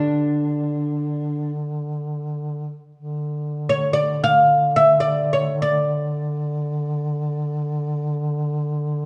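Hypnotic and melancholic, this fragment of an Arabic maqam ensemble piece sets a woody, deep-voiced fretless oud with double strings up front, carrying the melody, over a dark, close-miked duduk drone with folk-style vibrato that holds on alone after the oud stops at 8.1 s, all wrapped in a moderate recital-hall reverb.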